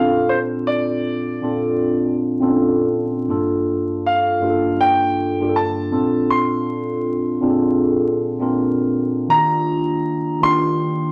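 Smooth and warm, this short R&B excerpt moves at a relaxed 80 BPM in 4/4 with a swung sixteenth-note feel, set in Bb major. A grand piano with a natural, warm tone carries the melody up front in a high register, from C5 to C6. Beneath it, a mellow tine electric piano plays the accompaniment with a clean, direct sound colored by a phaser, reaching down to G2 and up to Bb4. Both parts play throughout the full 11.1 seconds, moving through lush extended chords: Bbmaj9, Gm9, back to Bbmaj9, and then Ebmaj9 at 9.3 seconds. The sound is wrapped in a wet studio reverb and a layer of vinyl crackle, with the highs gently rolled off for a soft, vintage sheen.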